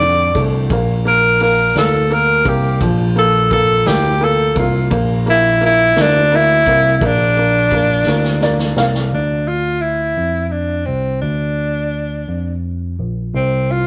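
A clear tenor saxophone carries the melody up front in this melancholic, aching pop ballad in six-eight, singing with a light vibrato and a smooth top across the full 13.9 seconds of this fragment from a longer piece. Beneath it, a barky tine electric piano takes the bass role through a combo amp, clean and close, while a woody, slightly detuned upright piano with short sustain supplies the accompaniment. A distant, roomy acoustic drum kit played with bundle sticks keeps time at 57 BPM with a tight kick, medium-tuned snare and dark ride cymbal. The harmony moves from D minor to a Bbsus2, and both drums and upright piano play a fill from 8.1 to 9.1 seconds before dropping out, leaving saxophone and electric piano over Dm7 and Bb/D until the chords fall away at 13.3 seconds. A moderate stone-room reverb and a rough rehearsal-room sound with a dulled top end give the whole passage an intimate, unpolished feel.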